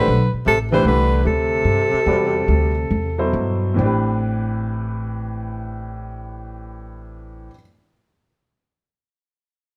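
A mellow, whispered soprano saxophone leads this searching, hypnotic modal jazz fragment in A dorian, over a breathy tenor saxophone second line with vibrato and scooped notes, a clear, intimate baby grand piano with audible action noise and long sustain, and a woody, thumpy pizzicato upright bass on an Am11 chord, all swinging in 4/4 at 130-154 BPM and slowing down from 0.5 s to 3.8 s; the saxophones stop at 3.3 s, leaving piano and bass in light reverb until the piano's close at 7.6 s.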